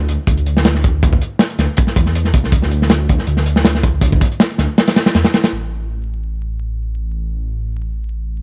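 Drum and bass with a jungle edge, nostalgic and frenetic at 160 BPM in A minor, this excerpt sets a crunchy, saturated breakbeat kit with a punchy kick and rolled-off top against a deep, rumbling detuned saw bass that beats and sustains, the kick dropping out at 4.8 seconds before the drums stop at 5.5 and the bass carries on alone to 8.4, in a dry, gritty recording dusted with vinyl crackle.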